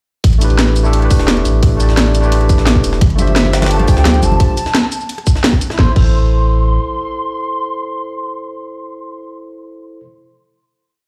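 A rolling two-step groove drives this soulful, melancholic liquid drum and bass piece, built from a tight, up-front electronic kick and a layered drum kit with a cracking snare, closed hats, rim clicks, shaker and crash. Beneath them sits a looped, pitched-up jungle breakbeat with edits, compressed and gritty, its hats, ride and snare filtered thin and set low in the mix. A deep, round sine sub bass carries long gliding notes up front, while a barky, overdriven tine electric piano plays syncopated chord stabs through a combo amp, trailed by dub echo, and rings on to the end. At 3.0 seconds, light conga hand drums slip into the background, and soon after a hollow, woody clarinet-like synth lead arrives with soft, sustained call phrases, detuned and wavering with vibrato, chorus and digital delay. The drums fall away by 6.1 seconds, leaving a final A minor chord to hang in a large studio reverb that sounds like a big system in a bare room.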